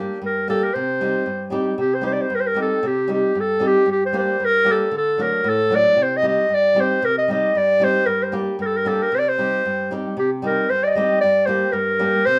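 A wet studio reverb gives this short passage a roomy sheen, with clarinet and guitar both sitting up front. It is Balkan folk in a straight 2/4 at 114 BPM, set in C Dorian with a raised fourth and carrying a virtuosic yet bittersweet mood. An acoustic flamenco guitar with fresh, warm strings opens at 0.0 seconds, fingerpicked in flamenco style as accompaniment in a lower register. A warm, classically styled clarinet enters at 0.3 seconds as the solo melody, singing in a narrow upper band and sounding louder than the guitar. The harmony circles between G minor and C minor, with a D chord adding a brief lift before the music settles into a new closing section at 10.2 seconds. The passage is cut from a longer piece, so it ends mid-flow.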